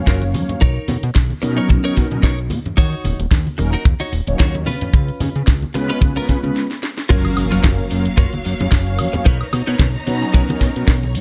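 Nu-disco with a feel-good, groovy lift at 111 BPM in F# major, this excerpt rides a swung sixteenth feel as a fat, saturated analog bass and a round, dark synth brass coloured by chorus, phaser and slapback echo carry a chord cycle from F#maj7 through Bmaj9, D#m7 and C#7. A clean, direct-recorded electric guitar picks a riff under analog chorus, while a tight, up-front kick anchors an overdriven house kit of cracking snare, bright hats, crash and woodblock, with ringing congas and maracas tucked in the background. After a break and drum fill at 6.6 seconds, the drop at 7.1 seconds brings in a bowed string section with vibrato and sidechain pumping, plus an electronic impact in the background.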